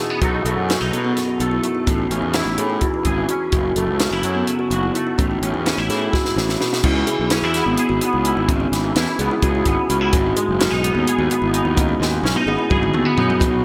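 A bright, 1980s-style digital sheen and a lush hall reverb surround this playful, wistful math rock and midwest emo excerpt in a restless 7/8. A woody, mellow kalimba spins arpeggios over a clean, twangy electric guitar with ensemble chorus, while a growly, overdriven fuzz bass and a compact, dry cocktail kit with a punchy kick, high-tuned snare, dark cymbals and gated reverb sit up front. The opening section moves through B7, Amaj7 and F#m7, and at 6.8 seconds, after a drum fill, a second section turns to C#m7 and G#m7 before another fill from 12.0 seconds.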